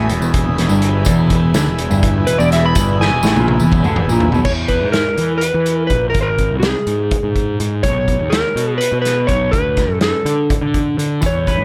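Psychedelic rock in 7/8 at 248 BPM in E lydian, hypnotic and kaleidoscopic, where a dark slide guitar with analog delay solos over a buzzy overdriven combo organ, a clean, phased, double-tracked semi-hollow guitar riff, a round fuzz bass up front, a shimmering tanpura drone in the background, a punchy vintage drum kit with a fill from 3.0 to 4.5 seconds, and jingly tambourine, before organ, riff guitar and tambourine drop out at 4.4 seconds as the chords move from E through G# and B to D in a small, pumping room.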